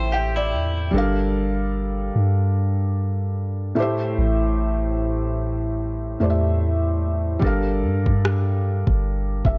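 A felt-muted upright piano, mellow and intimate, opens this late-night, sensual contemporary R&B excerpt with a fill. Alongside it, a bright, twangy clean electric guitar plays brief arpeggios treated with spring reverb and tape echo until 0.9 seconds. A deep, round 808-style bass sits up front beneath the swung sixteenth-note feel as the chords move between Am7 and Gm7, and a smooth electronic drum kit of soft kick and rim click arrives at 7.4 seconds in a dry mix.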